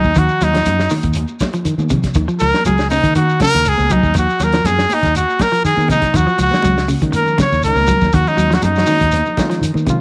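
A clear, up-front trumpet carries a solo with vibrato across this hypnotic, defiant afrobeat excerpt at 121 BPM in Eb dorian, resting on a single Ebm9 chord, while a bright, clean picked electric guitar plays arpeggios and a dark, round fingered bass holds the low end. A dry, muffled soul drum kit with a tight kick and rolled-off top drives the straight 4/4 groove, with a grainy shekere and ringing, high-tuned congas sitting in the background. At 6.5 seconds a reedy, barky electric piano joins quietly beneath, all within a small room with light reverb.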